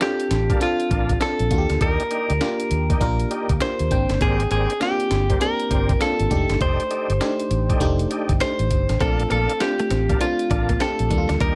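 A dry cut from a longer piece of bouncy, flirty new jack swing R&B, with a swung sixteenth-note feel over lush major-seventh and extended chords. A compressed, up-front clean guitar carries the melody with tube saturation, over a glassy, bell-like FM electric piano with chorus and a gritty, thumpy breakbeat kit with a high-tuned snare. A dark, round, foam-muted bass enters at 0.3 s, a smooth tonewheel organ with key click and chorus vibrato adds quieter stabs from 0.5 s, and at 9.0 s a second picked guitar joins in the background with a riff under subtle chorus.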